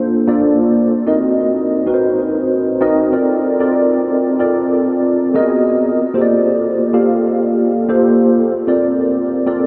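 In a straight 4/4 at 95 BPM, this glossy, urban pop piece in Bb major features a mellow, clean tine electric piano playing solo and up front from 0.0 to 9.7 seconds, colored by analog chorus and tape echo and moving through Bbmaj9, Ebm6, Abm9 and Gm9/Bb, inside a dreamy mix soaked in a huge ambient reverb with a 6.7-second decay.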